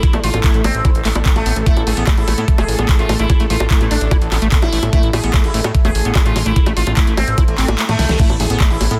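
An overdriven, knocking electronic kick drum drives this psychedelic, alien trance passage at 147 BPM alongside a fat, detuned, saturated analog bass and a big-room dance drum kit with a huge snare, bongos, handclaps, hi-hat and crash, while a buzzing, shimmering sitar carries the melody through phaser and tape echo over a squelchy liquid acid bass riff, a tense swarming drone and a very quiet, moody deep dark ambient pad, with sidechain pumping on the sitar, drone and acid bass, before a reverse cymbal and sub drop enter at 7.5 seconds, the kick drops out at 7.8 seconds for a drum fill, and an impact lands at 8.2 seconds in a dense, heavily limited mix.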